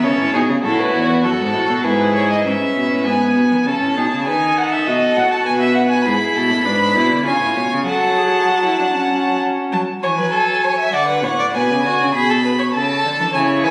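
Joyful and lively, this baroque-style fugue for string quartet moves at 99 BPM in 3/4 and settles into F# minor from 6.1 s. A single bowed violin carries the melody up front with a warm, smooth vibrato, while a second violin adds an expressive line with soft attacks and portamento. Above a rich, even cello bass, a focused viola accompanies before dropping out at 9.7 s and returning at 13.3 s. The violins and cello sound distant, caught on a phone in a concert hall with a moderate 2.2-second reverb, plus studio reverb and compression.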